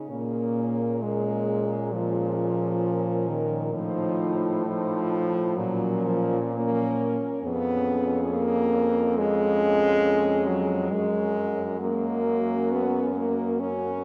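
A serene, tender passage for horn quartet opens with the melody horn and a second line, both mellow with light vibrato and set distant and roomy in the background, the second line soft-edged. They are joined almost at once by a dark, soft-attacked accompanying horn and a bass horn placed up front. Taken slowly at 58-70 BPM in 4/4 with a free rubato feel, the lyrical classical writing moves through Bbm7 and C#7/E# harmonies into F# major, which holds from 7.4 s. A cathedral reverb with a 5.5-second decay surrounds the quartet, heard from further back in the room, in this cut from a longer piece.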